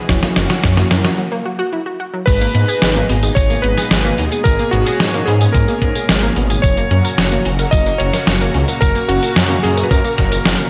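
A vintage electric grand piano carries the melody in this cinematic, driving synthwave excerpt, entering at 2.3 seconds with a clangy low end, long sustain and delay over chords moving from G#madd9 to F#. Beneath it, a thick, saturated detuned saw bass with chorus and a thumpy, sampler-style kick drive a straight 4/4 pulse. A tape-toned 8-bit drum machine sits up front, with gated reverb on its snare, hi-hat, tambourine and crash. In the background, an analog pluck plays bright, round arpeggios with chorus and delay, shaped by a filter sweep at the start, while a lush unison pad holds sustained chords with a slow attack. The piece opens on an F#7 chord with a drum fill and short stabs from a soft, warbling FM electric piano with cassette coloring, which stops at 1.2 seconds as a break leads into the melody. Light reverb keeps the mix close, and the top end is gently rolled off.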